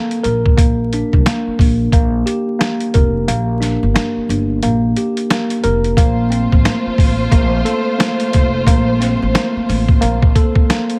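A compressed, pitched-down, sampler-style drum kit sits up front in this gritty, tough boom-bap hip-hop excerpt, with a thumpy kick, a medium-tuned snare and hi-hat riding a swung 89 BPM groove in 4/4. The kick drops out between 3.3 and 6.0 seconds. Underneath, a woody, pizzicato upright bass with steel strings holds down the low end in G minor. A worn, slightly out-of-tune tine electric piano, mellow and direct, carries the accompaniment through filtered chords, moving from Gm to Bbsus2 at 6.0 seconds. At that same moment a lush, bowed studio string section enters with distant, vibrato-rich stabs softened by filtering and delay. Vinyl crackle and a small room ambience frame the whole excerpt.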